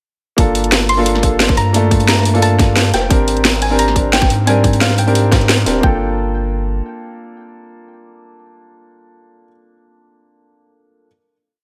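A light, small-room reverb frames this short, melancholic and lush liquid drum and bass piece in G minor at 176 BPM, opening straight into a drop where an overdriven, tight electronic kick and a layered garage kit with a cracking snare and rolling two-step hats sit up front, while a gritty, dark breakbeat loop with edits and filtered hats and snare sits in the background. A deep, round sub bass holds long gliding notes under polished baby grand piano chords in rootless voicings with syncopated pushes and tape echo, moving from Gm9 to Abmaj9#11. From 0.9 s a soft pluck with chorus and digital delay traces a short call-phrase motif. After the drums drop out near 5.8 s and the bass follows by 6.8 s, the final Gm9 chord rings on. The pluck fades by 9.5 s, and the piano lingers until 11.1 s.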